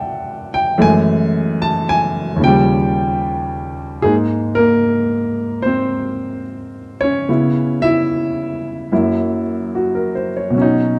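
Solo jazz at 74 BPM in 4/4, swung on the eighth notes, with a sophisticated, warm mood. A clear baby grand piano carries everything alone from 0.0 to 11.0 seconds, ranging from D#2 up to A5 with a natural, up-front tone, short sustain and a touch of slapback echo. The harmony moves through rich colours: C6, F#m9 and D#9 in the opening phrase, then Abadd9, Dbm7 and Gb7 once the second passage arrives at 4.0 seconds. The room adds only light reverb to a dry, close sound that recalls a 1970s studio, with some lossy compression artefacts audible. Tuned slightly sharp at A4 = 441 Hz, this is a short cut from a longer piece.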